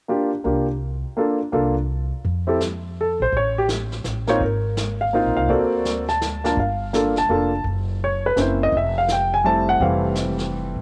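An intimate concert grand piano opens this relaxed jazz trio waltz in F major at 167 BPM, carrying the swung 3/4 melody with audible action noise and a cassette-tape tint. A woody, growly pizzicato upright bass joins up front at 0.4 s, and at 2.2 s a brushed drum kit with a boomy kick and a taped tone enters as the harmony moves from C7sus4 through Ab69 and Gb7#11 to Fmaj7. The whole trio sits in a small room with light reverb, giving this brief home-recorded cut a warm, close feel.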